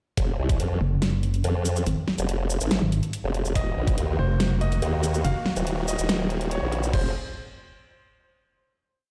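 Menacing and aggressive, this short heavy wobble dubstep piece opens straight into a half-time drop at 0.2 seconds over an F minor chord. Two up-front wobble basses carry it with modulated phrases whose wobble speed keeps changing: a formant-sweep bass built from pulse and sine tones with chorus and overdrive, and a dark, detuned, saturated pluck bass that pulses and answers it. A layered electronic kit drives the half-time beat with a huge snare, bright closed hats, shaker and crash, anchored by a knocking, tape-toned kick. At 3.6 seconds the harmony shifts to E-flat minor, and a warm, natural baby grand piano enters with a repeating high riff coloured by tape echo, while lush sawtooth supersaw chords pump in the background with a moving notch. The mix sounds like a big sound system in a bare room, and a final F minor chord rings out from 6.9 seconds to close the piece.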